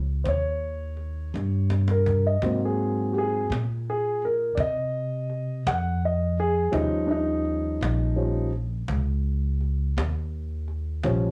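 A pizzicato upright bass with steel strings opens this soulful, swaggering slow blues at 56 BPM in a straight 12/8 feel in Eb mixolydian, quickly joined by an up-front concert grand piano with deep bass that carries the solo throughout and a saturated, compressed cajon played with hard hands and faint snares, which adds a fill from 1.3 to 2.4 seconds, as the tape-coloured piano and cajon and the woody bass move through Eb7, Ab7 and back to Eb7 in a light-reverb home cassette recording.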